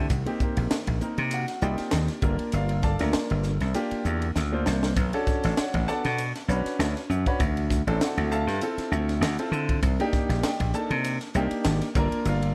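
Electric jazz fusion with a funky, driving feel and a light swing on the sixteenths, cut from a longer piece. A bright, punchy slap bass sits up front beside a clear concert grand piano with deep bass, which carries the accompaniment through minor ninth chords, while an acoustic kit with a high-tuned snare, punchy kick, hi-hat and ride plays in a pumping small room and breaks into a fill at 4.4 seconds. The production is dark with light reverb, and lossy compression artefacts can be heard.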